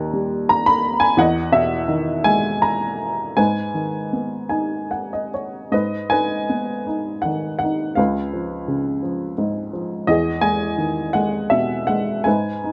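In a lilting 3/4 with a free, rubato feel, this passage of lyrical classical solo piano drifts between roughly 72 and 87 BPM, never settling into a strict pulse. A single upright piano carries everything from start to finish, its woody, slightly detuned tone and short sustain placed up front in a moderate studio reverb. Set in G# minor, the harmony moves through Emaj7, G#m and C#7, giving the music a melancholic, wistful cast. The piano ranges from C#2 up to B5, and a brief fill between 4.1 and 5.7 seconds bridges the opening phrase into a second, contrasting passage that runs to the end. Taken from a longer piece, it feels intimate and reflective, like a private moment at the keyboard.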